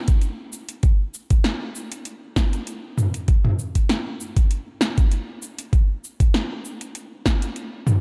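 A lightly swung 4/4 downtempo groove sets a mystical, meditative mood, as an up-front knocking electronic kick drum runs until 7.4 s alongside an overdriven deep house drum kit of cabasa, metallic hi-hats, punchy snare and toms, both parts re-recorded in a large room and given a dark, lightly reverberant production in this short cut from a longer piece.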